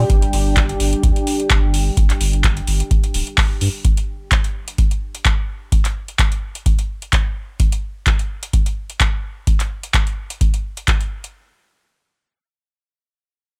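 Driving and gritty, this acid house excerpt from a longer piece rides a lightly swung sixteenth-note feel in four. A dry, deep electronic kick sits up front, joined by a booming, tape-tinged analog drum machine with handclaps and metallic hi-hats. Beneath them, a thick, saturated sub bass with a fast attack holds long notes, breathing with sidechain pumping. Two detuned sawtooth pads open the passage: a lush, warbling vintage unison pad tucked into the background and a moody, dark ambient pad with a sub octave and its own reverb, both chorused and breathing with sidechain pumping. The pads drop out at 3.8 s and the bass at 3.7 s, leaving the drums to carry on alone until 11.3 s in a dry room.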